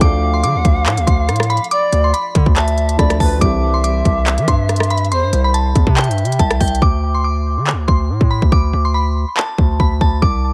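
Eerie and melancholic, this fragment of a trap-flavored hip hop track moves with a heavy half-time feel inside an echo-soaked digital ambience. A glassy synth bell carries the melody high above, its crystalline, full-bodied tone ringing out with chorus, a low-pass filter and dub echo, while an airy, distant pan flute with vibrato adds a second line beside it. Deep in the background, a felt-muted upright piano supplies soft, dark accompaniment, with its action noise audible beneath the filtered, echoing chords. Up front, a distorted 808-style bass hits with aggressive, saturated weight, and a trap kit of hard-clipped kick, crisp hi-hats, handclaps and rim clicks drives the groove over a move from Dm to C. At 6.8 seconds the flute and piano drop out and the hi-hats fall silent, leaving bell, bass and the remaining drums to carry a starker passage on a D5 chord.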